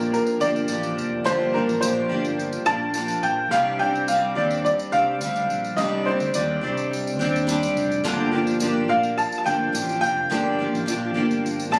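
This short acoustic pop piece opens on a picked, double-tracked steel-string acoustic guitar sitting up front, joined from the start by a clean, direct-recorded electric guitar tucked in the background playing arpeggios and a growly, punchy fretless electric bass. Within the first second a woody, boxy upright piano takes the melody with a touch of delay, while a jingly tambourine adds bright percussion. The mood is wistful and reflective, moving at 106 BPM in a straight 4/4 feel in G minor. The harmony drifts from Gm7 to Cmadd9 at 3.5 seconds and back to Gm7 at 8.0 seconds. The passage was captured on a phone in the room with club reverb and compression, and it is cut from a longer piece.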